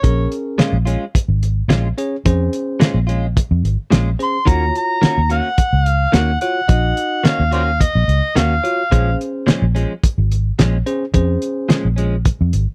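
A straight-eighth soul blues groove at 108 BPM in 4/4 sets a smoky, soulful mood in Bb minor, moving from Bbm7 to Ebm7 and back across this short excerpt from a longer piece. Up front, a cloth-damped drum kit gives a thuddy, muffled pulse of hi-hat, tight kick and fat snare, its gritty, saturated tone rolled off at the top. A vintage muted fingered electric bass sits just as close, dark, round and punchy from the amp. A bell-like tine electric piano supplies bright, clean accompaniment, while a direct-recorded clean electric guitar adds compressed, picked stabs drenched in lush chorus from 0.6 seconds. An overdriven, amplified harmonica blurts briefly at the start, then returns from 4.2 to 9.2 seconds with a gritty solo peppered with tongue slaps, all captured dry and close in a small room with a 1970s studio flavor.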